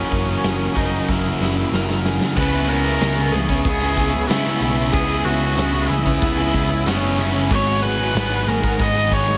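Shoegaze-tinged dream pop rock in a straight 4/4, this brief, wistful fragment from a longer piece floats on a bowed viola melody, rich and smooth with vibrato, set back at a distance and trailed by tape echo. Beneath it, a brassy, detuned sawtooth pad holds sustained chords with chorus and a filter swell, while a twangy, slightly broken-up guitar through a small old amp plays fingered arpeggios bathed in lush chorus and tape echo. Two heavier guitars carry riffs in the background: a crunchy overdriven part washed in reverse reverb and a dark, thick fuzz guitar with distortion and chorus. A round, amped picked bass anchors the low end, and a huge arena drum kit with a punchy kick and medium-tuned snare enters at 0.1 seconds, playing a fill before the harmony moves from F#7 to C#m7 at 2.4 seconds. A jingly, vintage-sounding tambourine joins at 2.7 seconds, and the progression settles onto G#m7 at 7.5 seconds, all wrapped in light reverb and a small room ambience.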